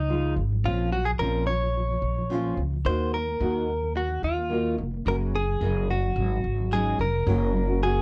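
In a straight 4/4 feel, this easy-going, sunny acoustic pop piece, cut from a longer work, sets a thumpy, woody pizzicato upright bass with transformer saturation up front beside a clean, scooped, compressed electric guitar picking the melody, while a double-tracked, thumb-plucked nylon-string guitar with fresh strings and a deep classical tone supplies the accompaniment, all wrapped in light reverb and the worn, warbling pitch drift of old cassette tape.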